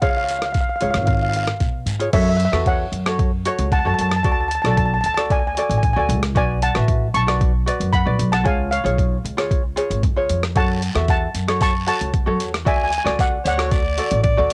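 Cool and bittersweet, this calypso excerpt from a home cassette recording sets a shimmering, close-miked steel pan lead over mellow fingerpicked ukulele, woody pizzicato upright bass with tube saturation, and a gritty, compressed boom bap sampler-style drum kit with thumpy kick, crash, hi-hat and rim click, while a raspy guiro plays briefly at the start and returns at 10.6 seconds, and a bright alto saxophone with vibrato and plate reverb enters at 13.4 seconds.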